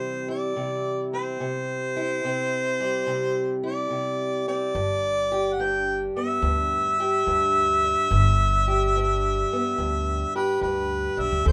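Rollicking and soulful, this short swung acoustic country blues cut features a mellow, up-front harmonica carrying the melody with light vibrato and scooped notes in a jazz style, over a dark, boxy fingerpicked steel-string parlour guitar, with a woody pizzicato upright bass joining at 4.7 seconds as the harmony moves from C to G in a moderate booth ambience.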